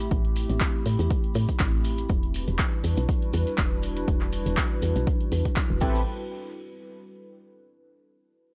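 A dry, gritty cassette-tape sound frames this late-night, smooth deep house excerpt at 121 BPM in A dorian, swung on the sixteenths, where an overdriven, punchy electronic kick sits up front beside an analog drum machine's crash, handclaps and hi-hat and mellow, grainy maracas. A woody, round FM bass pumps under a filter sweep while a warbling, nostalgic pad holds lo-fi chorused chords moving from Am9 to Em9. At 5.8 s a glossy, detuned polysynth stab lands on the return to Am9.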